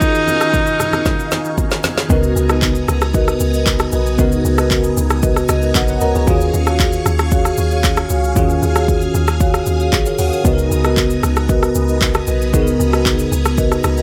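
A bright alto saxophone with vibrato and analog delay opens this hypnotic, soulful amapiano excerpt at 115 BPM over a bell-like tine electric piano, a swirling phased string machine with ensemble chorus and sidechain pumping, and an up-front deep house kit with a woody snare and dark hats, while soft background congas and a very quiet electronic swell pass by before the drop at 2.1 s brings in smooth marimba stabs with analog delay and a round, percussive log drum bass over Ebm11 and Db13sus4 chords, with an electric piano fill at 5.2 s, in a dry, gritty recording with digital ambience.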